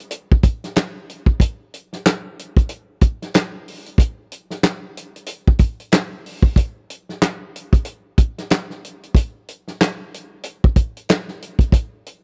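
Dry, close and up front with a 1970s studio feel, this short R&B excerpt features a lone acoustic soul drum kit of handclaps, hi-hat, tight kick and medium-tuned snare, mid-forward with a rolled-off top, swinging through a soulful, sultry groove from 0.0 to 12.2 seconds.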